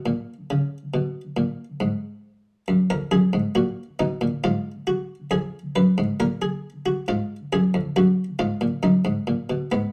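Serious and solemn, this brief passage from a longer baroque-style fugue in three voices unfolds at a measured 68 BPM in a straight 4/4. A single harpsichord with its buff stop engaged carries every line, its plucked, lute-like tone sounding muted and dry in the French manner. The instrument sits up front, ranging from E#2 up to Cb5, with only light reverb around it. The opening moments are unharmonized before the counterpoint settles into D# minor at 2.7 seconds, then passes through F diminished over A flat, A#5, and D# minor over F#. The whole fragment lasts just under ten seconds, an extract cut from a larger work.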